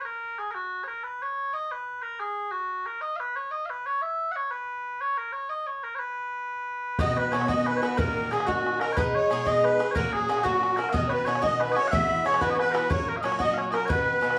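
A straight 6/8 Celtic folk jig at 121 BPM in B major, this rollicking, bright passage cut from a longer piece opens with mellow, sweet small bagpipes playing the melody solo and up front, then at 7.0 s a reedy, shimmering musette accordion adds a close-miked second line, an Irish bouzouki brings picked, metallic double-string accompaniment, and a boomy bodhran sounds in a live room, all set in moderate studio reverb as the chords move from B through G#m and Badd9 to Eadd9 and F# until 14.4 s.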